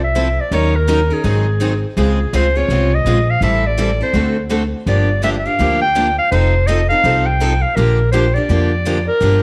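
A clarinet with vibrato and scooped notes opens this lively, playful slice of swinging jazz manouche, carrying the melody up front over a growly, woody pizzicato upright bass. Two bright, picked steel-string acoustic guitars join at 0.2 seconds with accompaniment, one set back in the background with audible finger squeak. The parts sit in a moderate echo-chamber reverb with small-room ambience as the changes move from Fmaj7 through Dbmaj7 and on to a closing Bb6.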